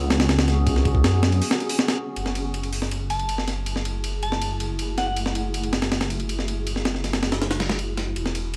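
A compressed, gritty breakbeat sampler-style kit drives this dark, atmospheric drum and bass and jungle fragment in a straight 4/4, its thumpy kick and medium-tuned snare sitting up front with a tape-warm, small-room character. Beneath it, a deep, rumbling detuned saw bass beats against itself while a granular cloud pad holds blurred, evolving chords in its own reverb, moving from C#7sus4 to F#m9 at 2.2 seconds, where a filter sweep on the pad begins. A soft, pure FM bell melody warbles through chorus, phaser, 12-bit sampler grit and dub echo from 3.1 to 5.1 seconds, set in a dry, rough hardware sound dusted with vinyl crackle.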